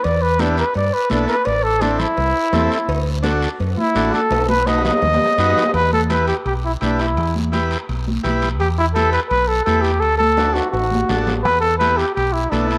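A breathy trumpet opens up front with a mellow, whispered solo over a round, dark fingered electric bass, setting a fiery, danceable cumbia groove in this excerpt cut from a longer piece. Bright, high-tuned congas, a ringing cowbell and timbales, and a raspy, close guiro sit behind them, with the congas and metal percussion placed in the background and the timbales sounding distant in a large room. A buzzy vintage combo organ enters at 0.4 seconds with light vibrato, supplying clean accompaniment through a minor-key progression. After the trumpet solo and a drum fill close the opening section at 5.7 seconds, a second section begins, with another fill arriving around 10.4 seconds. Moderate spring reverb and a small room ambience give the intimate, close-miked trumpet and the bass a vivid, dance-floor immediacy.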